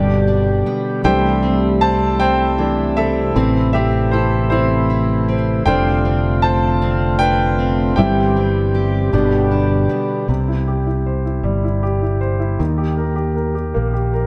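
A clear, intimate concert grand piano with audible action noise carries a solo from 0.0 to 10.3 seconds in this tender, heartfelt six-eight pop ballad in C major at 52 BPM, alongside a lightly overdriven percussive tonewheel organ with key click and slow rotary speaker holding sustained chords, fingerpicked steel-string acoustic guitar arpeggios with fresh strings, lush chorus and delay, and an up-front fretless electric bass with ensemble chorus, set in a dreamy mix soaked in plate reverb that reaches an Eb chord at 12.6 seconds before this excerpt ends.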